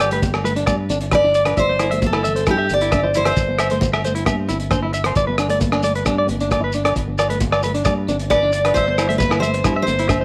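Highlife guitar band music in G major at 134 BPM, carefree and danceable, with a jumbo steel-string acoustic guitar up front carrying the picked melody from 0.0 to 3.9 seconds and returning at 8.3 seconds, finger squeak audible on its full-bodied tone. A twangy, compressed electric guitar at the edge of break-up plays arpeggios through tape echo, while a dark, thumb-plucked nylon-string guitar sits in the background and a round fingered electric bass holds the low end on a steady G chord. A muffled, gritty drum kit with a tight kick, hi-hat and rim click keeps a straight 4/4 groove, joined by ringing agogo bells, bright high-tuned congas struck with hard hands, and a grainy, mellow shekere, all in a moderate studio reverb.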